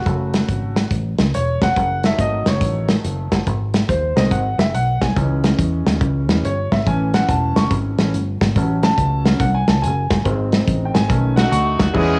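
An intimate, clear grand piano with audible action noise and cassette tape coloring plays solo from the start of this solemn, fervent uptempo gospel passage at 141 BPM with a swung feel, over a warm, foam-muted fingered electric bass and an up-front acoustic drum kit with dark cymbals, a punchy kick and its own cassette tape grit, all in a small home room as the chords move from F#m through G# and C#m to B7, before a tight saxophone section with vibrato enters at 11.4 s.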